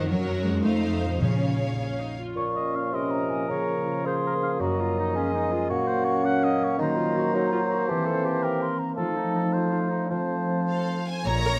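A lush, reverberant orchestral sound opens this stormy, urgent romantic excerpt in a rubato 6/8, where rich bowed violins carry the melody over clear violas, rich cellos and distant double basses, with a brief timpani stroke at 1.2 seconds, while a ringing harp plays arpeggios throughout and, from 2.4 seconds, a pure flute, oboe, distant clarinet and present bassoon take over the lines above mellow, roomy horn chords until the violins return at 10.7 seconds, joined by the lower strings at 11.3 seconds.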